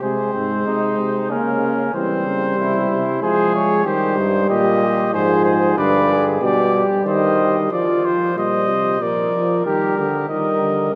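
Four brass voices sound together from the first moment in this stately, elegant classical canzona in triple time, its imitative writing set in a vast, wet cathedral reverb. An up-front trumpet carries the melody with a warm tone and light vibrato, while a more distant, roomy flugelhorn sings the second line just beneath it. A dark, present trombone supplies the accompaniment, also with light vibrato, and a clear bass trombone with a soft attack and a vintage colour anchors the harmony from below. The harmony moves through chords in F minor before the passage shifts into a second section at 7.7 seconds. The trumpet and flugelhorn end at 10.9 seconds and the trombones at 11.0 seconds, as the excerpt, cut from a longer piece, comes to a close.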